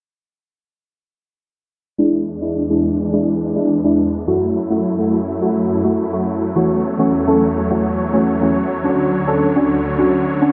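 From 2.0 s, deep, mellow chord stabs with a soft, detuned chorus sheen sit up front beside huge, airy supersaw chords in this carefree, summery 105 BPM pop excerpt, cycling through E7, F#m7, A6/E and Dmaj7 under a filter sweep and a lush hall reverb.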